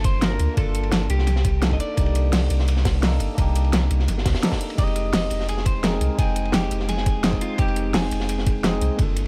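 Liquid drum and bass at 171 BPM in F dorian, this short excerpt from a longer piece feels rolling and lush as it moves from Gm9 to Cm9 at 1.3 seconds and on to Fm9 at 4.8 seconds. A round, deep sine sub bass sits up front beneath a knocking, overdriven electronic kick, layered with a pop drum kit whose fat snare and warm hats are also overdriven and re-recorded in a small room. Behind them a crunchy breakbeat kit adds hi-hat, ride cymbal and a medium-tuned snare, gritty and dark with a rolled-off top, its cymbals, hats, snare and room all high-pass filtered. A clean tine electric piano played through a combo amp carries the chords, colored by phaser and tape echo. The melody comes from a bright, twangy picked electric guitar at the edge of break-up, treated with analog chorus and dub echo, which drops out at 8.6 seconds while the rest of the band plays on.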